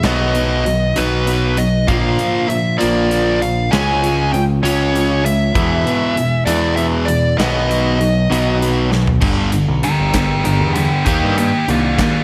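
Quiet-loud alternative rock in 6/8 at 65 BPM, this bittersweet, restless excerpt moves in half time as a bright, cranked stack guitar riff sits up front beside a nasal lead guitar with a parked wah, overdrive and tape echo. Underneath, a dark, full-bodied fingerpicked steel-string acoustic guitar plays arpeggios in the background, a growling overdriven electric bass holds the low end, and a big rock kit with bright cymbals and a punchy kick plays in a big room. A drum fill at 8.9 seconds leads into a lead guitar solo from 9.2 seconds, all set in light reverb and small room ambience.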